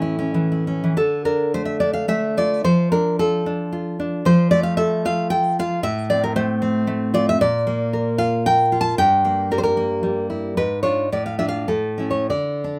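A solo nylon-string guitar, fingerpicked with fresh strings, carries this brief romantic excerpt in D minor, its full-bodied, deep classical tone sitting up front under a light reverb. The mood is intimate and wistful, moving in 3/4 with a rubato feel that drifts between 91 and 117 BPM. The guitar spans G2 to A5, and finger squeaks add a close, human texture to the acoustic sound. The harmony opens on A before settling into Dm at 1.0 seconds, passing through F, Bb and diminished colours, including a G#dim7 at 10.6 seconds, before returning toward A at 11.7 seconds. The instrument is tuned slightly low, to A4 = 436 Hz, and the passage is cut from a longer piece.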